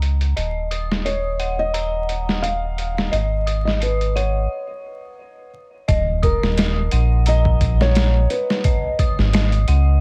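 Vinyl crackle hangs over this dark, melancholic trip hop piece, cut from a longer work. Its muffled, compressed, pitched-down sampler drum kit has a thumpy kick and a medium-tuned snare, re-recorded in a small room and set up front beside a round, deep analog bass. An eerie, inharmonic FM synth bell plays high arpeggios through chorus, phaser and tape echo. From 1.1 seconds a felt-muted upright piano carries the melody, soft and intimate with audible action noise and gritty 12-bit sampler texture, and a break at 4.5 seconds leads into a closing passage moving from Ebm to Abm7.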